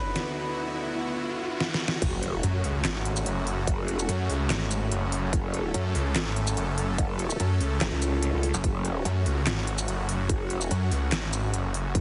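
Heavy and chaotic, this half-time wobble dubstep cut opens on a short build-up where a lush supersaw pad holds sustained chords, pumping against the sidechain, while a riser climbs in the background and drum fills snap in. At 2.0 seconds the drop hits with an impact, and the electronic kick drum lands punchy and tape-warm alongside the growl bass. The growl bass is aggressive and wobbling, its saturated, formant-filtered tone thickened with chorus and overdrive and sitting up front. From 2.4 seconds a snarling distorted saw bass joins it, bright and detuned with a moving notch, pushing the low end even harder. The dubstep drum kit stays forward in the mix with a deep snare, crisp hats, handclaps, shaker and crash cymbal in a studio reverb. The whole fragment carries a heavily compressed, radio-like sound with light digital ambience, its top end rolled off.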